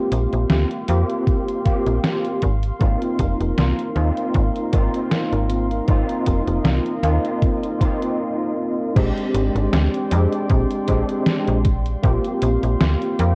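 Awash in warbling old-cassette pitch drift and digital ambience, this dreamy, nostalgic vaporwave fragment at 78 BPM sets a barky, overdriven tine electric piano with sampler grit, chorus and analog delay over a mellow, detuned tape-like pad, a snappy, metallic FM slap bass up front, a detuned 8-bit drum machine's crash, hi-hat and medium-tuned snare, and a thumpy electronic kick from 1.3 seconds, with a brief break at 8.2 seconds before the harmony shifts from Bbsus2 and Ab69 to Bb13.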